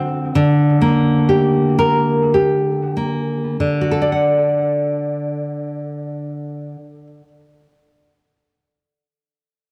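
The recording has a cassette-tape character, with a moderate echo chamber reverb lingering about 1.9 seconds and an echo-heavy mix around the instrument. This short, romantic passage for solo classical guitar is cut from a longer piece, set in D major and 6/8, and moves with a tender, sunny mood at a slow, rubato 30-47 BPM counted in dotted quarters. The nylon-string guitar sits up front, full-bodied and deeply classical in tone, fingerpicked across a span from D3 to F#5, with an analog delay trailing its notes and finger squeaks audible along the strings. The opening half slows down through its first 3.6 seconds, leaning on a Gm/D chord that arrives at 0.4 seconds. At 3.6 seconds a second section opens and the harmony settles onto D major, where the guitar keeps playing until the passage ends at 7.3 seconds.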